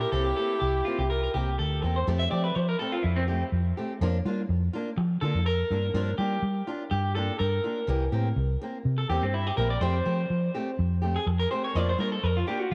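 A gently swung 4/4 groove at 124 BPM sets this warm, carefree highlife excerpt in F major, anchored by a dark, round, foam-muted electric bass sitting up front. A mellow, breathy alto saxophone with scooped notes and tape echo opens briefly alongside a trumpet in the background. Both drop out by 1.5 seconds, leaving the bass with a picked steel-string acoustic guitar with fresh strings and a twangy, slightly broken-up electric guitar, its arpeggios bathed in spring reverb and tape echo. From 2.1 seconds a clean electric guitar solo enters across a cycle of Fadd9, Bb/F, Gm7 and C7 in a small, lightly reverberant room.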